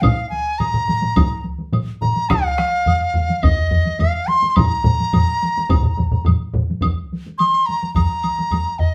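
A reedy large dizi carries the melody up front, its buzzing membrane and crisp attack cutting through with vibrato, in a driving, ceremonial Japanese traditional piece cut from a longer performance. Beneath it, several taiko ensembles struck with heavy sticks pound out a straight four-beat pulse, most sounding close and dry, while another that resonates in a small room joins at 2.3 s, and a woody woodblock ticks underneath. The group plays live together in one room with a wet studio reverb, shifting into a new section at 6.8 s.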